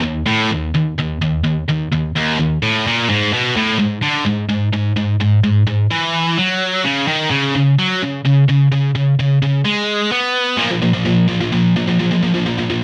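A moderate studio reverb surrounds this recording, whose top end stops at 10.7 kHz. It is a relentless, aggressive metal fragment cut from a longer piece, moving at 128 BPM in a straight 4/4. A single high-gain electric guitar carries it alone, bright, picked and double-tracked, sitting up front with heavy distortion. It opens on a passage outside any chord before settling onto Ab7(no3) at 3.1 seconds, then moves to Db5 at 6.8 seconds and finally Bb5 as a new section begins at 10.6 seconds. The part spans Eb2 to Cb4 through its 12.8 seconds.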